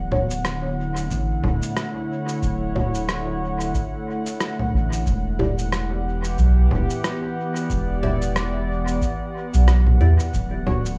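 Ambient dub with a meditative, hazy mood, this short excerpt cut from a longer piece moves at an unhurried pace with a gentle swing, its harmony drifting from Dmaj7 to Em7 and back. A warbling, nostalgic pad holds sustained chords throughout, its detuned sawtooth tone softened by chorus and its own reverb into a lo-fi, slow-blooming haze. Beneath it, a round, soft sub bass sits up front, deep and sustained with a quick attack. A muted, nasal chord stab cuts in with short filter-plucked hits, its detuned tone coloured by phaser, subtle chorus and dub echo. Sampler-style congas, cabasa and rim click, pitched down and muffled, trail off into echo, while an analog, tape-warm kick drum enters at 1.1 seconds and stays in the background. The mix leans heavily on echo and studio reverb, leaving the parts blurred and dreamlike.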